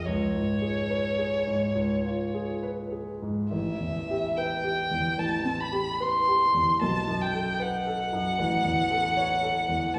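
In a rubato 4/4 pulse hovering around 67-77 BPM, this hazy, mysterious impressionist duo drifts through C#7, Am9, B5 and A harmonies in a brief fragment from a longer classical piece. Up front, a single bowed violin carries the melody with expressive vibrato, soft attacks and portamento, while a concert grand piano accompanies with a smooth, vintage tone and deep bass. A lush recital hall reverb sets the pair further back in the room, lending the duo a misty glow.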